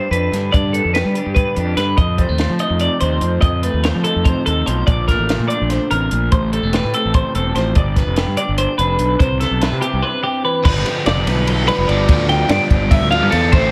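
A bright, twangy electric guitar through a small old amp, slightly broken-up and touched with spring reverb, opens the piece together with a clean, compressed twelve-string electric guitar whose up-front arpeggios sparkle high over spring and plate reverb. This is intricate, playful math rock with a midwest emo lean, moving at 291 BPM counted in eighths in a straight 7/8. A growly fuzz bass, fingered and overdriven, sits up front beneath them, while a compact cocktail drum kit in a small room, dark and smooth with a rolled-off top, a high-tuned snare and a punchy kick, works across crash, ride, hi-hat, snare and kick. The harmony moves through G7, F7, Bbmaj7, Fmaj7 and Cmaj7 before landing back on G7. At 10.6 seconds a double-tracked, warm, overdriven guitar enters with a crunchy riff carrying spring reverb, taking the place of the small-amp guitar, which stops at 10.7 seconds. The whole excerpt, cut from a longer piece, sits in a light reverb.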